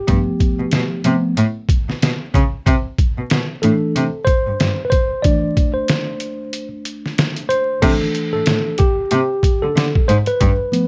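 Dark, crackling vinyl-tinged production with a faint mains hum frames this smooth, cool jazz-hop excerpt at 93 BPM with a swung 16th-note feel in C major, where a worn, slightly out-of-tune tine electric piano carries a mellow solo over G7 and C6 chords, a clear, bowed cello with vibrato holds the bass line, and a gritty, pitched-down sampler-style trip hop drum kit with a thumpy kick, medium-tuned snare, hi-hat and crash drops into a break at 6.5 seconds before a new section arrives at 7.8 seconds.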